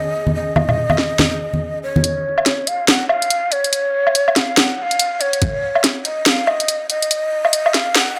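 A breathy, mellow ney carries the melody through low-pass filtering and dub echo as this dark, cavernous deep dubstep piece, cut from a longer work, opens over an airy, wind-like noise texture that stops at 2.1 s, while bright, low-tuned congas sit briefly up front and an overdriven, filter-swept garage drum kit with a cracking snare, hi-hat and woodblock settles into a half-time swung feel before a build-up from 2.0 s, punctuated by one muffled, thumpy electronic kick at 5.4 s, the whole recording dry and gritty with light reverb.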